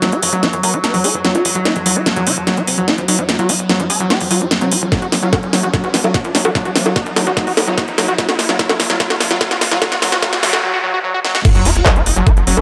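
Psychedelic and alien, this psychedelic trance passage in F# minor drives at 147 BPM in a straight 4/4, spending most of its length in a build-up with a drum fill, filter sweeps on the squelchy, gritty acid bass and the swarming, detuned rave lead, a noise sweep from 9.8 s, and a bright, morphing wavetable pad phasing in the background, before a drop and impact land on an F#5 chord at 11.4 s. Up front, a tape-warm drum kit of cracking snare, metallic hats, handclaps, bongos and crash is joined at 4.9 s by a knocking electronic kick, while a very quiet, punchy sequencer bass drives underneath and a faint, saturated formant-sweep wobble bass surfaces briefly. Sidechain pumping rides the lead, pad and acid bass, digital delay trails the lead and acid bass, and a riser and sub drop sit in the background from 3.1 s, all in a light reverb with a high-pass filter.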